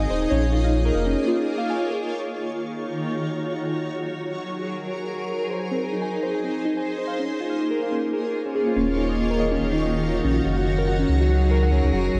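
A dry, gritty hardware recording with cassette tape character and light reverb frames this glitchy, cerebral IDM fragment, cut from a longer piece and carried by a swung sixteenth-note feel. A cloudy, evolving granular pad holds sustained chords throughout, joined at the start by a deep, round sub bass that drops out for a break at 1.2 seconds and returns at 8.8 seconds, while warbling, detuned lo-fi synth keys with sampler grit and tape echo sound a brief, nostalgic melody in the background at the opening. A harp-like, ringing synth pluck with chorus and analog delay spins dark arpeggios, pausing after the opening and returning at 5.5 seconds over a progression that moves through Bbm7, Ebm7, Gbadd9 and Ab.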